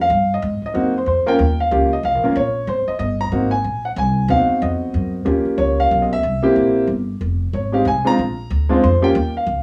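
Playful and sophisticated, this brief swung jazz waltz cut from a longer piece features a warm, natural baby grand carrying the melody up front over harmony rich in ninth chords, while a woody pizzicato upright bass with steel strings sits up front beneath it, both playing together throughout the 9.6 seconds in a small, live-sounding room with a wet, short reverb.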